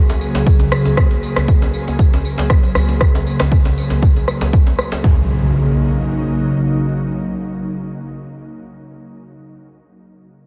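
Spiritual and driving, this afro house excerpt moves at 118 BPM in Eb minor with a light swing. An ethereal, detuned sawtooth pad holds sustained Ebm7 chords throughout, thickened by ensemble chorus, built-in reverb and sidechain pumping, alongside a deep, overdriven electronic kick that sits up front. Meanwhile a hard-hand djembe with metal rattles, a jingly tambourine and an electronic rim click fill out the percussion under a filter sweep on the drums. At 5.0 seconds the percussion drops away and an electronic impact rings out beneath the lingering pad.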